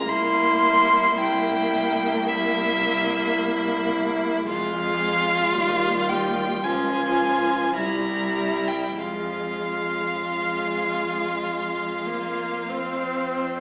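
Heard from further back in a recital hall with a wet reverb of 1.6 seconds, this recording carries an AM radio sound that gives the music a distant quality. It is a slow, solemn and yearning romantic movement for string quartet in F minor, moving at roughly 48-56 BPM in 4/4 with a rubato feel, cut from a longer piece. Up front, a single clear violin sings the bowed melody high between E5 and C6 with smooth, even vibrato, while a second violin holds a focused inner line around E4 to F4. Beneath them, a viola with a soft attack and expressive portamento sits further away in the accompaniment, and a rich, bowed cello anchors the bass from C2 to F2. The harmony moves from C7 to Fm at 4.5 seconds, passes through Db and C7, and settles again on Fm at 9.0 seconds. The melody violin falls silent at 13.3 seconds, while the other three parts sustain until about 13.6 seconds.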